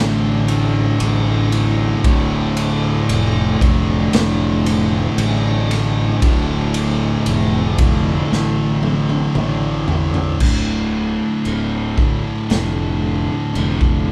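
A raw, gritty garage drum kit sits up front in this brooding, heavy stoner and doom metal piece, its punchy kick, medium-tuned snare, toms, crash and ride cymbals captured in a small, pumping room with a rolled-off top. The drums enter at 0.5 seconds over a D minor riff at 57 BPM in 4/4, tuned down to A4 = 436 Hz. Two thick fuzz guitars carry the riff together: one dark and distorted, the other tucked into the background. A bright, overdriven, double-tracked electric guitar plays alongside them, while a growly fuzz bass, fingered and punchy, holds down the low end. A drum fill runs from 8.3 to 10.4 seconds, where the bright guitar drops out and the rest of the band moves into a new section. The whole band plays live in one room with light reverb, and the recording is cut from a longer piece.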